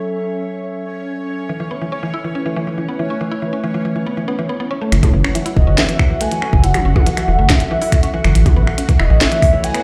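A straight 4/4 pulse at 140 BPM drives this intricate, cerebral IDM passage in F# minor, cut from a longer piece. It opens on a warbling, lo-fi pad holding sustained F#m7 and Aadd9 chords, detuned and dark with chorus, built-in reverb and vintage 12-bit sampler grit, while a bubbling texture of random resonant filter steps pumps quietly alongside it. At 1.5 seconds a woody, mallet-like FM pluck enters with arpeggios, its short decay and noise layer thrown into a digital delay. At 4.9 seconds the music returns to F#m7 and fills out: a round sine sub bass sits up front, glitchy drums scatter finger snaps, clicky hats, a tiny snare and toms, and a deep electronic kick lands from 5.0 seconds. A nostalgic, detuned lead then sings a high melody from 5.6 seconds, gliding with portamento and vibrato under subtle chorus. The whole mix carries light reverb and the resonance of a big sound system in a bare room.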